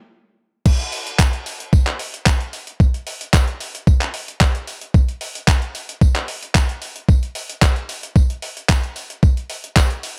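A dark, warm production with a digital ambience frames this confident, bittersweet pop excerpt in straight 4/4 at 112 BPM. After a brief silence, a clean 12-bit drum machine enters up front at 0.7 seconds with a thumpy kick, handclaps, hi-hat and crash cymbal, its sampler-style hits overdriven and re-recorded in a small room. A jingly acoustic tambourine sits close and dry in the background, and both parts carry on to 10.2 seconds.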